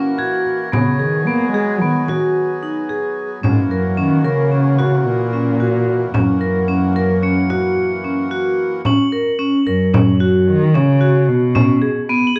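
Reedy, breathing harmonium chords and metallic vibraphone arpeggios, struck with hard mallets and carrying a slow motor vibrato, open this hopeful, shimmering fragment of contemporary chamber music in 5/4 at 111 BPM, set in F# mixolydian. A small, bright frame drum joins almost at once, and high, bell-like crotales sound briefly before coming back later. At 0.7 seconds a dark, bowed cello takes the melody, played sul tasto with vibrato and a soft attack, sounding intimate and close. The harmony moves between F#7 and G#m7, then settles on F# at 8.8 seconds as the harmonium drops out, before closing on a rootless E6. Cello and vibraphone sit up front in a moderate recital hall reverb, within a warm production.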